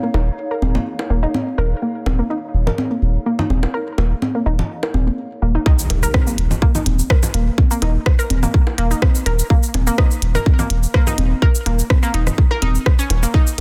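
A lightly swung 4/4 groove drives this quirky, cool excerpt of minimal techno, where a squelchy, resonant square-and-saw blip pluck riff with chorus, delay and sidechain pumping rides over a deep, punchy sine sub bass and delay-treated bongos and congas, while a warbly, nostalgic lo-fi pad drifts darkly until the drop at 5.7 seconds brings in a tight, up-front layered kick, a background impact and a clicky minimal kit of cabasa, hi-hat, ride cymbal and rim click, all within a dense, heavily limited, dry mix.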